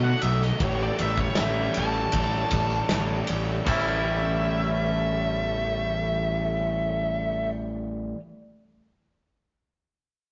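A fuzz-drenched lead guitar sings an up-front melody over a hazy, dreamy shoegaze and dream pop groove, with a growling, overdriven picked bass pushing just as hard beneath it. An overdriven semi-hollow guitar and a twangy, fingered clean guitar play riffs, while a bright, very quiet direct-recorded guitar adds compressed arpeggios and a vintage, chorused organ-string ensemble holds soft sustained chords in the background. A loose, punchy drum kit with dark cymbals plays from 0.2 to 3.8 seconds alongside a faint jingly tambourine, and the lead and organ stop at 7.5 seconds in this rough, tube-saturated rehearsal-room recording with a dull top end and a stone-room reverb.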